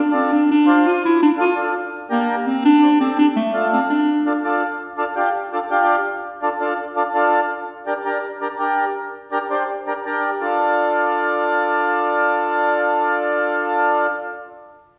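Latin music with a danceable, passionate mood, cut from a longer piece in a straight 4/4 feel. A warm clarinet carries the melody up front in a forceful, punchy jazz style, with light vibrato and a smooth top, playing as a solo in its low-to-middle register until about 4.4 seconds. A mellow, reedy accordion provides full, rich accompaniment with a mid-forward tone-chamber sound, entering at 0.1 seconds and continuing on its own through to 14.1 seconds. The harmony moves between D minor and G minor, returning to D minor as the final section begins at 10.4 seconds. The recording sits in a church or concert-hall space with a generous, wet reverb that lends the instruments a resonant glow.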